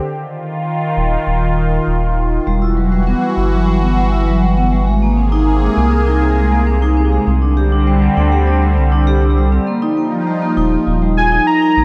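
IDM at 100 BPM in a straight 4/4, this eerie, melancholic passage is cut from a longer piece and drifts through a dreamy mix soaked in plate reverb. A phased analog pad opens at 0.0 s with swirling, detuned sawtooth chords treated with phaser and chorus, bright and up front as the harmony moves from Ebsus2 through Emadd9, Abadd9 and Csus2 to Ebadd9. A round analog bass enters at 1.0 s, deep and dark with tube saturation, its sine-like tone sitting close in the mix. From 2.5 s a vibraphone played with medium mallets and the motor off spins airy, metallic arpeggios through tape echo. Just before the cut, at 11.2 s, a velvety synth lead with chorus and vibrato slips in for a brief melodic phrase high above the rest.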